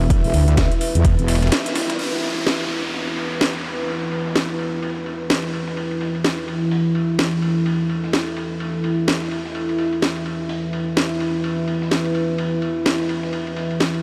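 A heavy, saturated wobble bass opens this swaggering, bouncy bass house excerpt at 127 BPM, pumping up front alongside a punchy electronic kick before a band accent and short break at 1.5 seconds. A deep, moody pad holds dark sustained chords throughout, while a tape-warm house kit brings a cracking snare, metallic hats and crash over a gritty, overdriven sampler-style kit in the background, all on swung 16ths. An electronic downlifter sweeps through from 2.0 to 5.8 seconds, and a huge ambient reverb gives the mix a dreamy, soaked atmosphere.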